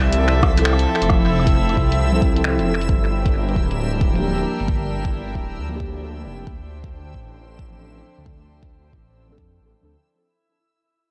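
A swung 4/4 groove at 134 BPM drives this wistful, melancholic future garage excerpt, with a deep electronic kick entering at 0.4 s beneath a deep house kit of finger snaps, hi-hat and rim click, its hats and snare dulled by low-pass filtering and trailed by tape echo. A swelling detuned saw bass sits up front, saturated and faintly menacing, while a soft, distant studio string section holds sustained chords that pump gently with sidechain compression. Muted, felt-like synth keys arrive at 0.5 s, intimate and dark with chorus, 12-bit sampler grit and tape echo, and a filter sweep runs across them throughout. High above, a reversed granular texture swells dreamily with a bright sheen and its own reverb. The harmony moves from Fmaj7 to Gm7 to Dm7 in an echo-heavy mix with light digital ambience, and the whole passage fades out across its length.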